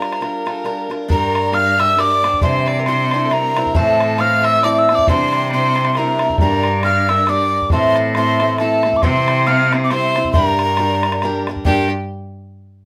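Celtic folk waltz in a swung 3/4, driving, dark and lively, cut from a longer piece. A breathy, hollow metal whistle with vibrato carries the melody over a clear, biting fiddle second line, while a boxy, up-front picked archtop guitar and a tight, damped, saturated bodhran keep the accompaniment moving. A bright, distant bowed cello enters on the bass at 1.1 seconds as the harmony circles through Gm, Cadd9, Am and C, all set in light reverb.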